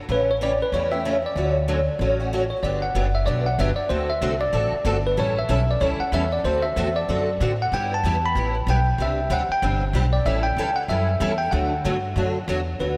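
Charming and playful, this short cut from a longer acoustic string swing piece moves at a lively 189 BPM in G major, with a light swing on the eighth notes. A bell-like, bright tine electric piano carries the melody with a clean, direct tone, its notes trailing into a diffuse ambient delay. Up front, a picked old ladder-braced acoustic guitar supplies the accompaniment with a boxy body and audible finger squeak, thickened by an ensemble chorus, while a pizzicato upright bass on gut strings adds a woody, thumpy pulse. The three parts play together from 0.1 to 13.0 seconds, moving from a brief opening passage into a longer one at 2.6 seconds, with harmonies that travel through chords such as Gmaj7, D7, G6 and Csus2 before settling on D. A lush hall reverb soaks the mix, giving the whole performance a dreamy atmosphere.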